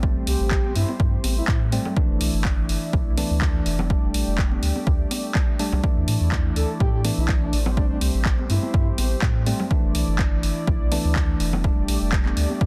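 A dense, heavily limited modern mix with little reverb opens this smooth, deep house excerpt at 124 BPM in A minor, its sixteenths carrying a light swing. An overdriven electronic kick sits up front beside a punchy analog drum machine of handclaps and hi-hat, also overdriven, while layered, tape-tinged congas stay in the background from 0.6 seconds. A round, dark analog bass holds the low end, and a clean tine electric piano plays stabs with delay, both pumping with sidechain compression along with a lush, chorused analog pad whose detuned sawtooth chords warble with a vintage softness. The harmony moves from Am7 through Fmaj13 and F69 to E7sus4 before circling back. A breathy, flute-like synth lead with chorus, tremolo, vibrato and delay floats in briefly from 0.3 seconds and returns at 6.6 seconds with a soft, airy melody.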